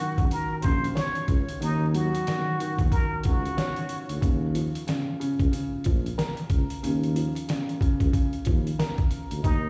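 Gritty and reflective, this boom-bap hip-hop excerpt swings lazily over a pitched-down, compressed sampler-style drum kit, with its thumpy kick, medium-tuned snare and hi-hat sitting up front. A worn, woody upright piano with audible action noise comps from the start beside a mellow, soft-edged tuba bass line with light vibrato, moving from Ebm7 to Bbm at 4.2 seconds. A breathy, plunger-muted trumpet with digital delay sings a distant, whispered jazz line until 4.2 seconds and briefly returns near the close, all set in a large studio reverb with vinyl crackle.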